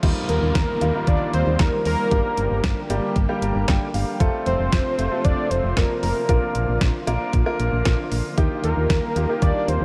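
An up-front 12-bit drum machine, with a thumpy kick and fat snare, drives this nostalgic, upbeat synth-pop passage at 115 BPM in a straight 4/4, cut from a longer piece. A punchy, round FM bass sits beneath a detuned sawtooth lead with vibrato carrying the melody, while an intimate grand piano with audible action noise plays accompaniment and adds a fill at 3.2 s. A silky string machine with ensemble chorus holds chords in the background over an Ebadd9–Gm–F–Bb progression, a very quiet downlifter sounds from 0.1 to 4.2 s, and a cathedral reverb soaks the whole mix in a dreamy haze.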